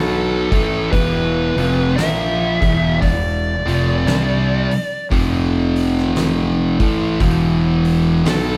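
A thick, up-front fuzz guitar riff opens this brooding stoner and doom metal excerpt, doubled in the low register and joined at once by a growly, punchy fingered bass and a dark, distorted lead guitar carrying the melody above. At 0.5 s an oversized, low-tuned acoustic drum kit enters with a boomy kick, fat snare and hi-hat, sounding big in the room. The tempo is a slow 57 BPM in 4/4 with swung eighths, and the band is tuned slightly flat of standard pitch. The harmony sits on E minor before shifting to F5 at 5.1 s and settling on E5 at 6.7 s. Recorded live in one room, the heavy ensemble is wrapped in a moderate stone-room reverb that gives the slab of overdriven bass and picked guitars a weighty, roomy presence.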